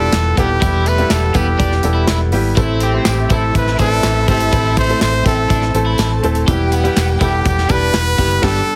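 Bittersweet and dramatic, this short cut from a longer piano-driven pop track moves in a straight 4/4 over a shifting harmony of E minor and A minor. A bright, close-miked trumpet carries the melody up front in pop style, while a clear baby grand piano supplies intimate accompaniment with audible action noise. An overdriven, double-tracked electric guitar picks a scooped riff beneath them, and a dark, foam-muted fingered bass gives a round, punchy low end. A modern acoustic drum kit drives the groove with a punchy kick, medium-tuned snare, hi-hat, handclaps and crash cymbal, joined by a jingly, very quiet tambourine. At 2.6 seconds a rich, bowed violin section enters in the background with expressive vibrato, and the band hits an accent together from 8.4 seconds, all framed by light small-room reverb and a heavily compressed radio sound.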